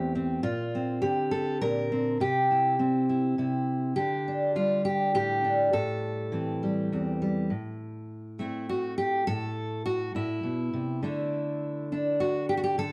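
A fingerpicked steel-string acoustic guitar plays alone in this melancholic, reflective folk excerpt, its full-bodied dreadnought tone sitting up front in a dark production with moderate large studio reverb, moving slowly in 6/8 at 68 BPM from A phrygian through chords such as Bbadd9 and Dsus4 before shifting to A dorian at 7.5 s over Am and Dsus2.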